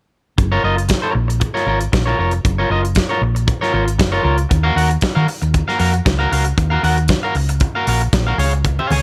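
Disco at 116 BPM in F# major, glamorous and celebratory, with a twangy, slightly broken-up picked electric guitar and a dark, round hollow-body fingered bass up front over a studio drum kit of hi-hat, tight kick and fat snare with a rolled-off top, moving from F#maj7 to D#madd9 in a dry mix until low-tuned, damped congas slip in at 8.7 s just before the clip ends.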